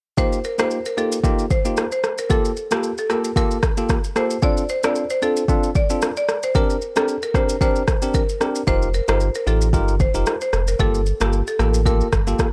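A sunny, romantic afrobeats groove at 113 BPM in F mixolydian features a buzzing, woody marimba melody struck with hard mallets and touched by analog delay. Beneath it, from the very start, sit bell-like tine electric piano chords and an up-front deep house drum kit whose deep kick, rim click and shaker carry overdrive and 12-bit sampler grit, with a light 16th-note swing. A round sine sub bass enters at 8.7 s as the chords cycle through F9sus4, Gm9, Dm7 and Bb69, all in a dry, gritty sound cut from a longer piece.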